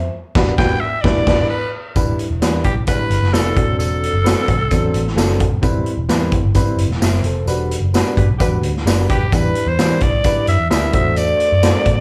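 A straight 4/4 groove at 130 BPM drives this passionate, uptempo 1960s-style soul cut in E minor, built on a punchy, saturated garage drum kit up front, a dark, round muted electric bass, and a clear, boxy baby grand piano with slapback echo, joined by a jingly tambourine in the background from 2.0 seconds. A raspy, forceful alto saxophone with slapback echo leads with vibrato and scooped notes from 0.6 seconds, and a mellow, tight horn section, also with slapback echo, adds a brief second line at 8.2 seconds before the saxophone returns. It sounds like a live gig heard through the venue's PA, with light club reverb around the band.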